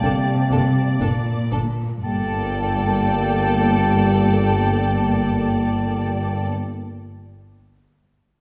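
Cut from a longer piece, this bittersweet, longing cinematic passage opens with the whole orchestra at once, a distant violin section carrying the melody in a free, rubato feel that slows over the first 2 seconds. A rich second violin section, pure-toned concert flute, smooth oboe and very quiet clarinet add second lines, while a background viola section accompanies, a mellow French horn section holds sustained chords, and an expressive cello section and focused double bass section carry the bass. The ensemble sits in a wet scoring-stage reverb, heard from further back in the room.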